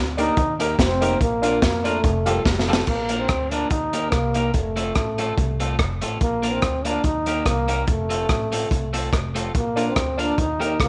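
Cheerful and joyful, this short ska excerpt at 144 BPM in Bb major swings lightly as a breathy, mellow trombone carries the melody up front over a woody pizzicato upright bass, a slightly broken-up picked electric guitar, a gritty saturated breakbeat kit with dark cymbals and a drum fill at 2.5 seconds, and an intimate, slightly detuned upright piano whose stabs sit in the background only until 2.8 seconds and again from 9.8 seconds, all in a small room with light reverb.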